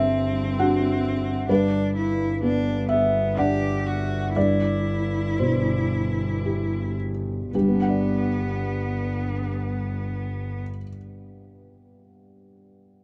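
A dark, warm production with light reverb frames this intimate, tender neoclassical excerpt for piano and strings, in G major and a rubato 3/4 that slows over its opening 7.5 seconds (54-68 BPM). A soft, mellow, felt-muted upright piano sits up front as accompaniment, moving from D7/G through Gmaj7 and Cmaj7/G, while a distant, clear cello carries a smooth second line with vibrato and a rich double bass holds G1 with even bowing. The cello and bass stop at 10.6 seconds, and the piano continues alone until 13.0 seconds.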